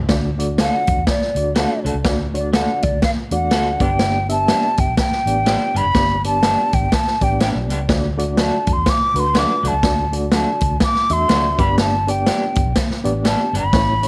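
A dark, round electric bass with a foam-muted tone opens this uptempo 1960s-style soul excerpt at 123 BPM in D major, joined almost at once by a reedy electric piano with fast tremolo and a punchy, up-front big-band drum kit swinging on hi-hat, kick and snare. From 0.6 seconds a breathy, hollow silver concert flute carries a joyful solo melody with vibrato and tongued notes, while a twangy, slightly broken-up electric guitar adds bright picked stabs. The chords move between D and G in a small room with light reverb, giving the whole a close, joyful swing.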